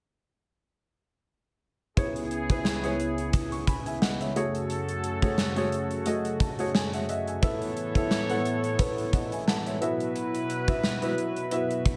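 This moody, dramatic excerpt of 1980s-style pop features a gated 1980s drum kit, its tight kick, medium-tuned snare and hi-hat sitting up front with a big, airy, polished gated-room sound. The music moves at 88 BPM in 4/4 with a light sixteenth-note swing, in C# minor, and every part enters together at 2.0 seconds. A baby grand piano carries the accompaniment with a natural, close tone, and adds a fill from 6.1 to 7.4 seconds. Beneath it, an analog pad holds sustained chords with a smooth, detuned sawtooth character, soft attack, long release and chorus. A horn section punctuates with ensemble stabs, warm and smooth on top with light vibrato, carried by digital delay. The harmony moves through C#m7, F#madd9, Asus2 and Bsus4, all set in a light small-room reverb.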